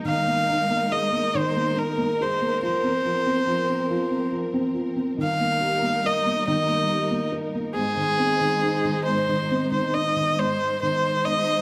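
Innocent and gentle, this short lullaby passage in 6/8 features a solo violin carrying the melody up front with a smooth, even, nasal and boxy tone and vibrato. Beneath it, a felt-muted upright piano gives soft, dark, intimate accompaniment with short sustain and audible action noise, while a studio string section holds expressive sustained chords with vibrato and portamento. A recital-hall reverb wraps the parts in a wet space, and the music moves into a new section at 10.4 seconds before the passage is cut off.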